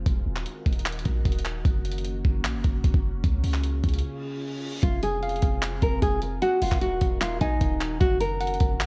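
A half-time trap groove from a gritty, thumpy sampler-style breakbeat kit of kick, hi-hat and handclaps sits up front over a deep, boomy 808-style bass and a glassy, ethereal FM pad with ensemble chorus, setting a melancholic, eerie hip hop mood in this cut from a longer piece; an electronic reverse cymbal at 4.2 seconds leads into a full-bodied, fingerpicked nylon-string guitar melody with finger squeak, low-pass filter and digital delay from 4.8 seconds, joined at 5.2 seconds by a detuned, lo-fi square-and-sawtooth pluck with chorus, the whole mix steeped in worn cassette-tape warble and faint mains hum.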